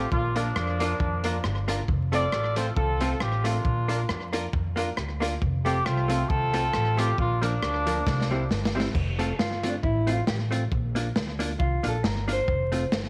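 A cheerful, joyful ska fragment in F major opens with a punchy, tight horn section carrying the melody, backed by a dark, picked hollow-body jazz guitar, woody pizzicato upright bass and a bright, slightly detuned upright piano adding stabs from the background. At a lively 136 BPM with a light swing, a gritty, saturated breakbeat kit with dark cymbals and a tight kick sits up front, its slapback echo giving the groove extra bite. The chords rock between Bb and F before a C chord and a drum fill set up the change at 8.9 seconds. There the horns and piano drop away, and a mellow, fingered electric guitar steps forward for a clean solo over the continuing bass, drums and jazz guitar. Light reverb, small room ambience and a layer of vinyl crackle give the whole a vintage, lived-in feel.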